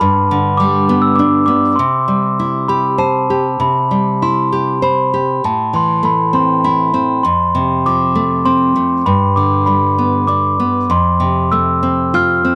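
A dry, close 1970s-style studio sound with light reverb frames this sleepy, innocent children's lullaby in C major, moving at 99 BPM in a rubato 3/4. Up front, a glockenspiel struck with rubber mallets carries the melody in a mellow, bell-like, ringing tone, while a fingerpicked nylon-string guitar gives deep classical accompaniment with a touch of finger squeak. Both play throughout the 12.6 seconds of this excerpt cut from a longer piece, as the chords drift through G, C, Amadd9 and F.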